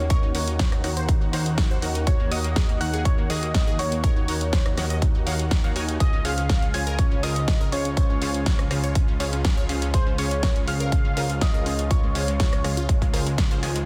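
Expansive and bittersweet, this progressive house excerpt moves at 122 BPM in a straight 4/4, with chords shifting from Ebm7 to Dbmaj7 at 6.0 seconds. A velvety synth lead carries the melody with a sub-octave weight, vibrato, chorus and digital delay, while a soft, round pluck sits in the background above it as a dark, gentle second line. A thick, warbling vintage pad holds sustained chords with a slow attack and long release, and two lush, detuned unison plucks supply arpeggios and stabs, the stab layer wave-folded with a moving notch and tucked behind the mix. A fat, detuned analog bass with a filter pluck and fast attack anchors the low end, and the pad, plucks and bass all breathe with sidechain pumping. A punchy, layered electronic kick sits up front with a big-room kit of hi-hat, rim click and a huge snare, all under light reverb in a dense, heavily limited modern master.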